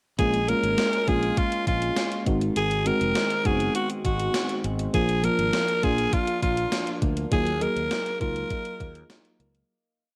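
A raspy, gritty alto saxophone leads this short, complete 1980s-style pop piece, playing a forceful, close-miked melody built on song-like motifs with vibrato, up front in the mix. Beneath it, a gated 80s digital drum machine drives a straight 4/4 at 101 BPM with a thumpy kick and a big backbeat from its gated reverb snare, giving the mood an urgent, dramatic push. A growly fretless electric bass carries a syncopated pop-funk line, while a mellow FM electric piano with chorus adds round, warbling chords in close voicing with grace notes and a push rhythm. Set in the background, a clean, twangy electric guitar recorded direct plays a fingerpicked roll pattern treated with subtle chorus. The harmony moves from Bbm7 through Ab7 and Bb to Ebmadd9, and the whole verse carries the tape-worn character of a home cassette recording with light reverb before fading out from 7.3 to 9.7 seconds.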